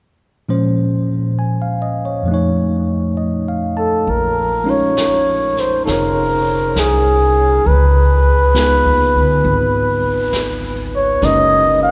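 A bell-like tine electric piano opens this slow, intimate jazz ballad at 0.5 s, its bright, clean chords sitting up front as it moves from Bbm9 to F7b13 in Bb minor at 67 BPM with a gentle swing feel. At 3.8 s a trumpet with a bucket mute takes the solo melody, its dark, veiled tone carrying light vibrato and scooped notes with a smooth top, giving the line a wistful, close-up quality. The upright bass arrives at 4.1 s, plucked and woody with a growly, thumpy low end, while a vintage brush kit joins on brushed snare and hi-hat, sounding distant and roomy with a rolled-off top. The harmony then drifts through Bbm11 and Db9 before settling on Gb69. The long, wet cathedral-like reverb of a church or concert hall lends the piece a hushed, spacious air, and the recording is an excerpt cut from a longer piece.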